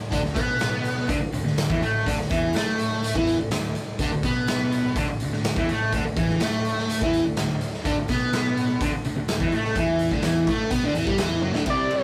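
Psychedelic rock at 125 BPM in a straight 4/4, kaleidoscopic and hypnotic, cut from a longer piece and built on a D5 chord. A double-tracked fuzz guitar riff with phaser sits up front over an overdriven, punchy picked bass and a gritty garage drum kit in a pumping stone room, while a very quiet swarming, detuned drone and a jingly tambourine hover beneath. A drum fill at 11.4 seconds leads to a screaming, guitar-like synth lead entering at 11.7 seconds, all captured as a rough rehearsal-room recording with warm saturation.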